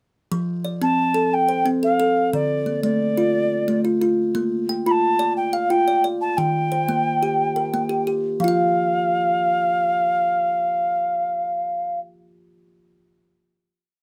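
Warm and hypnotic, this short southern African traditional piece sets an mbira-style interlocking cycle in 12/8 at 119 BPM in F major, with a kalimba entering at 0.3 seconds to ring out a woody, thumbnail-plucked ostinato of arpeggios through F, Dm, Bb and Eb. An alto ocarina joins at 0.8 seconds with a pure, clay-toned melody of tongued call phrases, shaded by vibrato and sitting up front with the kalimba. Close, detailed microphones and light reverb frame the pair, and after the cycle the piece settles on a final note from 8.4 seconds.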